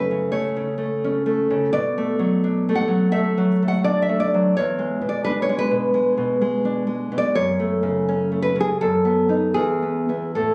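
Captured on a phone in a room with light club reverb and compression, this short cut from a longer romantic piece for solo classical guitar features a full-bodied, up-front, fingerpicked nylon-string guitar, finger squeaks audible, moving tenderly in a rubato 4/4 at about 85 BPM through F#m, Bm7 and E7 before returning to F#m, passing through B7/F# and settling on E at 9.6 seconds.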